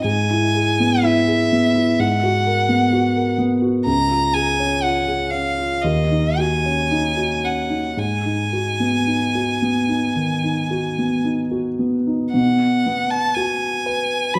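Set in a wet recital hall with a 1.7-second reverb, this mysterious, hazy impressionist duo in G# minor drifts at a rubato 54-65 BPM in 4/4, as a rich, smooth solo violin sings the bowed melody with even vibrato from D#5 to B5 while a warm grand piano supplies up-front accompaniment from C#2 to B4 through colours such as E/G#, D#m7 and G#m7, the music moving into a new section at 12.3 seconds before this cut from a longer piece ends at 14.4 seconds.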